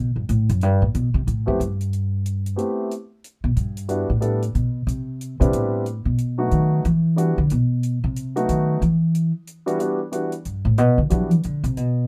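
Smoky and cool, this fragment of small-group swing and bop jazz in E minor moves at a brisk 183 BPM in a swung 3/4. A woody, up-front pizzicato upright bass solos throughout, and a tight, natural hi-hat sits quietly beneath it. A polished, present grand piano comps from 1.5 seconds through chords such as Am9, Cmaj7, B7 and Em9, all set in light reverb.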